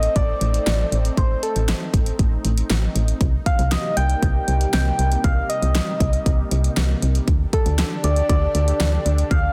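Synth-pop with a nocturnal, melancholic mood, this short excerpt moves in a straight 4/4 over a brief progression from A diminished to C minor seventh, settling on D suspended fourth. A gentle, keys-like FM synth lead carries the melody with struck, decaying notes, colored by chorus, tremolo and delay. Beneath it, a lush unison pad of detuned sawtooth and square waves holds thick, slow-attack chords, shimmering with chorus and phaser. A punchy, mellow FM bass with a fast attack sits up front alongside an electronic pop drum kit of layered kick, fat snare and hi-hat, given a small-room character. Light reverb surrounds the parts, and the dense, heavily limited master keeps the whole passage modern and full.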